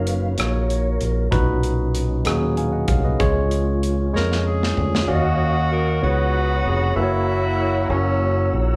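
A slow, straight 6/8 sway carries this hopeful, reverent gospel excerpt, with a barky, bright tine electric piano, a growly, punchy fingered bass sitting up front, a soft, flute-like tonewheel organ sitting in the background through a slow rotary speaker and chorus vibrato, and a mid-forward acoustic drum kit with a medium-tuned snare that closes its part with a fill ending at 5.1 seconds. A clear tenor saxophone with light vibrato takes the melody from 4.2 seconds, joined at 5.1 seconds by a vintage-toned, jazz-style saxophone section as the harmony moves into richer ninth and suspended chords. The band sounds as if playing live together in one large studio room with moderate reverb.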